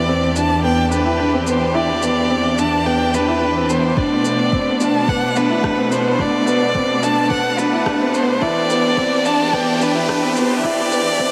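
A dreamy, reverb-soaked mix with a huge ambient tail and a trimmed low end frames this short excerpt of intimate, melancholic piano and strings electronica in E minor, moving at 108 BPM in a straight 4/4. A felt-muted upright piano carries a soft, mellow riff with its action noise audible and tape echo trailing behind, while an expressive solo violin sings the melody up front, nasal and boxy, with vibrato and portamento and its own tape echo. Underneath, a bright, lush string section holds sustained chords in the background through a low-pass filter, and a rich, earthy cello section anchors the bass; both parts breathe with sidechain pumping. A very quiet electronic shaker and rim click tick along almost from the start, and a deep, tape-toned electronic kick joins at 4.0 seconds. The passage works as a build-up over Em7 and Bm7, with a background riser entering at 7.2 seconds, shortly before the harmony returns to Em7 at 8.4 seconds.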